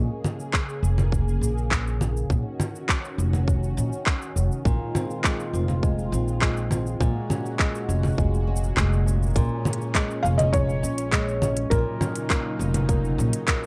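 A woody, pizzicato upright bass sits up front in this delicate, autumnal folktronica excerpt in Bb minor, moving at a straight 102 BPM in 4/4 over a Bbm7, Ebm7, Fm7 and Gbadd9 progression. Beneath it, a tight electronic kick and an organic electronic kit of congas, handclaps, crisp hi-hat and shaker give the beat a produced feel, both re-recorded in a large room. A smooth, detuned sawtooth pad with a soft attack and a moving notch holds sustained chords through chorus, adding a bright sheen. A dark, fingerpicked flamenco guitar plays arpeggios through delay, flickering at the start and returning at 4.7 seconds. At 10.2 seconds a felt-muted upright piano brings a brief, mellow, intimate melody through delay and plate reverb, its action noise audible, all set in a light reverb.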